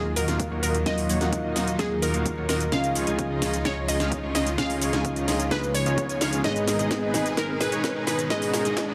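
A glassy wavetable pluck melody opens this powerful, emotional festival progressive house build-up over a dark, boxy grand piano, a clear symphonic string section, a dense supersaw riff under a filter sweep and a thick detuned saw bass, all pumping with sidechain, before a house kit with cracking snare and metallic hats joins at 0.2 seconds, a punchy background kick at 0.4 seconds and a very quiet riser at 4.2 seconds, as chords move from Ebmadd9 through Dbadd9 to Abm.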